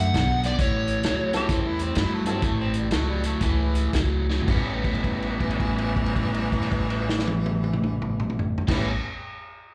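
Heard as a live club gig through the venue's PA with light reverb, this laid-back, soulful electric blues shuffle in A mixolydian swings at 107-134 BPM and slows from 0.6 to 4.5 s. A fingered, overdriven slide guitar sings briefly at the start, while a compressed, picked electric guitar riff, a thumpy gut-string upright bass and a muffled, lo-fi vintage drum kit with dark cymbals carry on. A woody upright piano sits in the background from 1.3 s, a raspy, growling tenor saxophone with vibrato plays a second line from 1.4 s, and a drum fill leads into a held note at 4.5 s.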